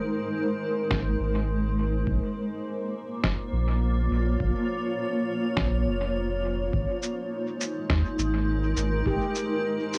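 A cloudy, evolving granular pad sits up front from the opening, holding sustained chords that blur through Abadd9, Bbm and Abmaj9 with a slow attack, detuned unison body and its own built-in reverb. This short ambient dub excerpt in Bb dorian moves at a meditative, deep 103 BPM in a straight 4/4, tuned to A4 = 444 Hz. At 0.9 seconds a round, sine-based sub bass enters up front alongside an analog, deep electronic kick that was re-recorded in a large room. A compressed, pitched-down, muffled sampler-style snare with cabasa enters at the same moment, carrying a dub echo and lasting to the close. The bass and kick drop out at 9.2 seconds, just after a ringing, airy handpan arrives at 9.1 seconds with soft fingertip arpeggios through analog delay. Cassette tape colours the pad, drums and handpan, and the whole piece has the light reverb of a home cassette recording.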